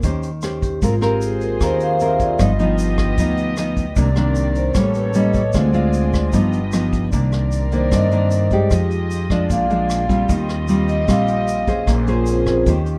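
Smooth and intimate, this bossa nova excerpt is anchored by an up-front, full-bodied nylon-string guitar, fingerpicked with audible finger squeak, over woody pizzicato upright bass, a brushed vintage kit with a punchy kick and rim clicks, and a grainy tube shaker in the background. A ringing, metallic vibraphone played with soft mallets takes the solo from 0.6 seconds, and a dark, reedy string section enters at 0.8 seconds with bowed, lightly vibratoed sustained chords. Light reverb gives the whole a dark, warm glow as the harmony moves through rich extended chords such as Cm9, G7b13 and Eb69.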